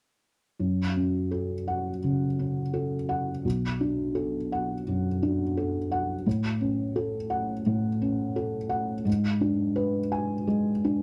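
A felt-muted upright piano, placed up front with thick felt and audible action noise, plays soft, dark accompaniment from 0.6 to 11.0 seconds in this fragile, longing classical fragment in F# minor. The tempo sits around 85 BPM in 4/4 with a rubato feel, moving through F#m, Bm7, F#m/A and G#dim. Close, detailed microphones and light reverb keep the sound intimate, and the piece is cut from a longer work.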